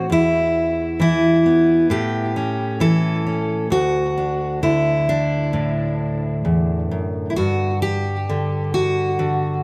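Gentle and peaceful, this short folk excerpt features a single fingerpicked steel-string acoustic guitar, heard alone from 0.0 to 9.6 seconds. It moves at an unhurried 66 BPM in 4/4 with a straight feel, settled in D major and tuned slightly high to A4 = 442 Hz. The jumbo guitar sounds bright and full-bodied, its fresh strings ringing from D2 up to A4, with finger squeak audible. Placed up front, the guitar carries tape echo, while light reverb gives the recording a soft sense of space. The harmony passes through E5, Aadd9 and D before a new section begins at 7.4 seconds on a G5 chord, which carries through to the end of this clip, cut from a longer piece.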